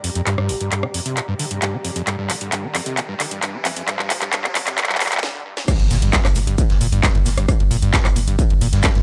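A squelchy, resonant acid bass riff, gritty with distortion, chorus, tape echo and sidechain pumping, leads this cut from a longer peak-time techno piece at 133 BPM in G minor, its filter sweeping through a build-up over a Gm chord. Up front, a techno kit with cracking snare and metallic hats plays drum fills, while a blurred, cloudy granular pad hovers in the background until 5.2 s, and a very quiet riser and impact runs from the build into the drop. After a short break, the drop lands at 5.7 s with a distorted kick up front and a gritty vintage kit with a rolled-off top, joined a moment later by a deep, saturated sine sub bass, giving the passage a driving, industrial mood.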